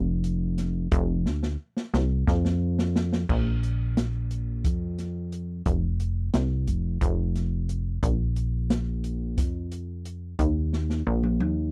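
The sound is dry and close, with the feel of a 1970s studio recording and very little reverb. This is a cut from a longer progressive instrumental piece for band, intricate and driving, in 7/8 at 177 BPM counted in eighths, with a straight feel in Bb major. A plucky analog bass sits up front in a low register, punchy and funky, its sawtooth and pulse-wave tones shaped by a fast-attack filter pluck that decays and evolves over time. Beside it, an acoustic jazz drum kit with an open sound plays in a small room, smooth and rolled-off on top, with dark cymbals, a medium-tuned snare, a boomy kick, hi-hat, crash and toms. A drum fill beginning at 1.3 seconds leads into a new section at 3.3 seconds, and another fill arrives at 10.7 seconds as the passage closes.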